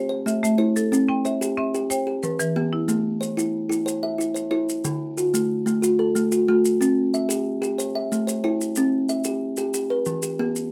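A steady 12/8 cycle at 122 BPM, counted in dotted quarters, drives this southern African traditional piece, built as an mbira-style interlocking pattern in an A equiheptatonic tuning. A bright, hard-mallet marimba with padauk bars opens with percussive, dry, full arpeggios, then drops out at 3.1 seconds. That leaves a plucked kalimba up front, its woody, boxy thumbnail tone coming from a solid board. Grainy, mellow maracas sit close under the kalimba from 0.3 seconds to the end, with a light reverb around the sound. The harmony circles through Am, C and Em, with a D chord briefly shifting the colour once the marimba has gone. The mood is rippling and warm, and the recording is cut from a longer piece.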